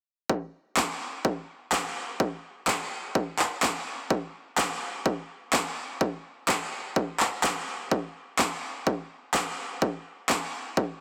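An electronic kick drum opens this short EDM excerpt at 0.3 s, punchy and up front, set to a straight 4/4 pulse at 126 BPM. Electronic handclaps join at 0.8 s, layered and produced like the kick, and both were re-recorded in a small room, giving them a close, physical presence. A high-pass filter trims the low end of the kick and of its room sound, keeping it tight. A lush hall reverb bathes the track in a long, wet tail, and the dense, heavily limited master makes it feel modern and full. Even with only drums playing, the mood is emotional and anthemic, like a passage cut from a longer piece.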